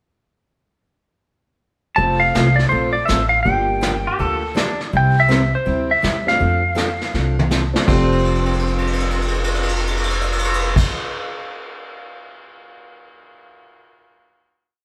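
A live band plays together in a stone room with a moderate reverb, giving this short western swing piece a close, vintage feel. At 163 BPM in F major, it swings with a playful lilt. A clean, twangy lap steel guitar carries the motif-based melody up front from 2.0 s, stating its phrases over a chord sequence that moves from F through Gm7 and C to F6. Underneath, a woody upright bass plays two-beat root and fifth lines with walk-ups, and a bright acoustic guitar picks four to the bar. A dark, mellow upright piano comps in syncopation in the background with close voicings. A pedal steel guitar adds answering blues licks as a second line, briefly around 4.1 s and again over the final held chord from 7.9 s, while the brush drum kit keeps a backbeat with snare sweeps and plays drum fills toward the close of the piece.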